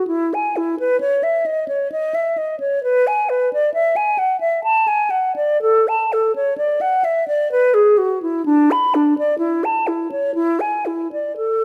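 A lone concert flute opens the recording, its pure, hollow tone close-miked and placed up front. This is a flowing, serene baroque-style fantasia in A major, moving at 64 BPM in 3/4 with uneven beats and a rubato feel that lets each phrase breathe. The flute carries the whole piece alone, ranging from D4 to B5 with tongued notes and vibrato. It is tuned slightly high, with A4 at 444 Hz. A moderate reverb from a large studio surrounds the instrument, decaying over about 1.4 s. Lasting 11.6 seconds, the recording is cut from a longer piece.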